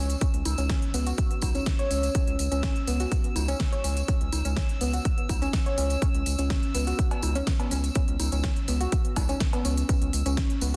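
Emotional and driving, this short progressive house excerpt rides a straight feel from its first moment. A punchy, up-front electronic kick anchors the groove, joined by a pop drum kit with a fat snare and crisp, tape-tinged hats, plus a jingly, close tambourine. Congas and cowbell, overdriven and re-recorded in a large room, arrive at 0.5 seconds and pump with the sidechain until 9.6 seconds. Underneath, a deep, round analog bass holds a single low note with a dark, sustained tone, while a soft pluck traces gentle arpeggios through lush chorus and tape echo. High above, a glassy texture of drifting overtones hangs calmly in its own reverb, and the whole mix arrives dense and heavily limited with a light room sheen.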